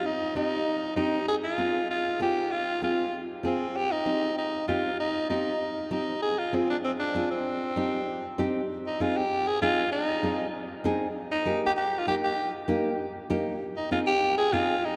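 A raspy, gritty alto saxophone opens this fiery Latin piece, cut from a longer performance, and a nylon-string guitar joins at 0.3 s. The tempo is a driving 194 BPM in a straight 4/4. Up front, the saxophone plays the solo melody in a punchy, edgy pop style with scooped notes. The fingerpicked guitar gives dark, full-bodied classical accompaniment, with finger squeaks audible. The harmony moves between Cm and Fm in the first passage, then shifts at 8.7 s to Ab and Eb chords. Both instruments ring out in a vast, echoing cathedral-like space with a long, wet reverb tail.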